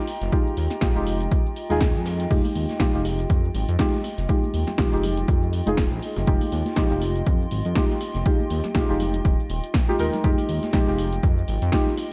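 Deep house with a smooth, deep mood and a gentle swing, this short section, cut from a longer piece, rests on a single lush minor-ninth chord. An up-front electronic kick with punchy, tape-warmed analog character and 12-bit grit drives the groove alongside a punchy analog drum machine whose crash, hi-hat, shaker and snare carry the same gritty sampler texture, while a very quiet acoustic kit with a fat, big-room snare sits far beneath. A smooth synth bass, detuned and saturated with a touch of vibrato, pumps against the kick in the low register. Deep, mellow chord stabs with a soft triangle-and-sine body, a filter sweep, a fast attack and a decaying tail are coloured by chorus and analog delay, above a warbly, nostalgic lo-fi pad that breathes in slowly with chorus, its own reverb and sidechain pumping. From 2.4 seconds, faint, dry congas and bongos played with soft hands add a bright acoustic touch, all within a dark production with light studio reverb.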